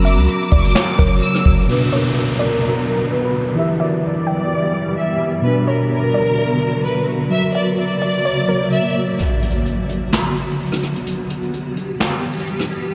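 A half-time trap pulse at 128 BPM opens this eerie, hard-hitting hip hop excerpt in B harmonic minor, where a lush bowed violin section carries the vibrato-laden melody over a soft round pluck, a mellow tine electric piano, a blurred, evolving granular cloud pad and a deep, boomy 808-style bass that drops out at 1.7 seconds, while a distant, roomy brush drum kit with handclaps and rim clicks frames a filter sweep, an electronic downlifter and an impact that lands with the break at 9.2 seconds, all drenched in a huge, dreamy ambient reverb.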